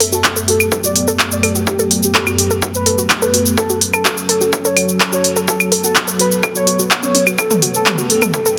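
An up-front techno drum kit of claves, handclaps, smooth hi-hats, shaker and toms drives this dark, cinematic melodic techno build-up at 126 BPM, with a punchy, layered electronic kick sitting lower beneath it, both re-recorded in a small room. A deep, moody sawtooth pad holds sustained chords from Gadd9/F# to F#m and back, while a warbling, lo-fi pluck runs arpeggios in the background with tape echo, and a bold, fat synth brass carries the melody through a filter sweep, all three pumping with sidechain compression under chorus. Light reverb and a dense, heavily limited master frame this excerpt from a longer piece, which closes on a barely audible riser at 8.6 s.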